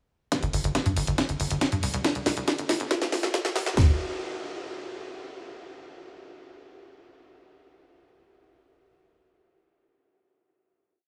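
Hypnotic and intense, this short psychedelic trance piece at 139 BPM is a build-up from 0.3 seconds to 3.8 seconds, with a garage drum kit's tight four-on-the-floor kick, cracking snare and bright programmed hats driving a drum fill and filter sweep over a punchy, rolling sixteenth-note sawtooth sequencer bass between G1 and G2, all set in a huge ambient reverb before a final note rings out to 5.5 seconds.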